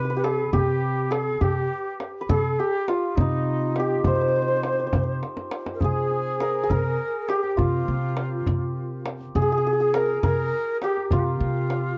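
A shimmering, ringing santur sits up front with the melody in this hypnotic, longing Persian modal ensemble piece in 6/8, cut from a longer performance, while a breathy, reedy ney with vibrato carries a second line in the same register. A woody, thumpy pizzicato upright bass holds a low C, and a deep tombak with a small-room sound plays a fill from 5.2 s that leads into a new section at 5.8 s. The sound is a dry, close 1970s-style studio recording with light reverb.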